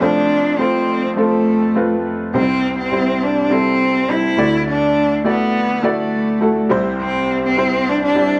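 A bowed cello and an upright piano begin together, opening a short pop fragment in C major at 103 BPM in a straight 4/4. The solo cello carries the melody in a middle register, sung with vibrato and portamento for an expressive, heartfelt line. The piano accompanies across a broad span from deep bass notes to the upper middle, its tone woody and worn, with a slightly detuned, natural character. The harmony moves from F to C, then to Dadd9 at 4.4 seconds, and back to C. Both instruments sit up front in a light reverb, and the mood is warm and uplifting through to the cut at 8.4 seconds.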